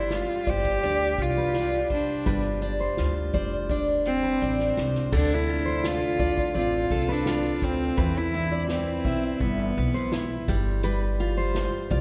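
Acoustic pop in G mixolydian at 84 BPM, carefree and sunny, with a rich, smooth bowed cello carrying the melody up front with vibrato until about 10.1 seconds over a bright picked jumbo guitar, a second fingerpicked guitar spinning fresh-stringed arpeggios, and a woody, thumpy pizzicato upright bass on gut strings. A distant, roomy unplugged kit played with bundle sticks brings dark cymbals, a tight kick, snare and shaker, playing a drum fill from 3.7 to 5.1 seconds as the harmony moves from G7sus4 to Dm7 and Cmaj7. The whole fragment sits in a moderate cathedral-like reverb with a soft, rounded top end.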